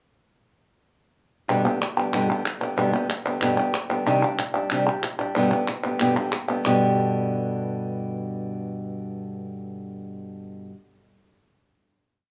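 A straight, driving pulse in four opens at 1.5 seconds, with crisp, dry palmas hand claps sitting up front and marking the cycle until 6.7 seconds. A small-sounding nylon-string guitar with fresh strings accompanies in mournful, intense flamenco style, moving between fingerpicking and rasgueado strumming with taps on the top, then rings out on a final chord through to 10.7 seconds. The whole piece has the rough feel of a home demo, set in a moderate plate reverb.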